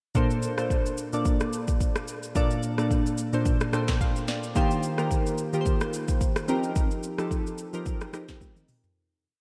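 Amapiano at 109 BPM in Bb major, a relaxed, dreamy piece with a gentle 16th-note swing, where glassy digital keys with chorus and phaser play rhythmic, spread chords that move from Bbmaj9 to Eb6 and F9sus4, adding grace notes and a short fill at 3.5 seconds. Beside them, an electronic afro-pop drum kit sits up front with a deep kick, sharp snare, smooth hats, steady shaker and syncopated rim clicks, plus toms. A lush hall reverb soaks the mix, and the piece fades out from 6.8 seconds as a drum fill arrives at 8.4 seconds.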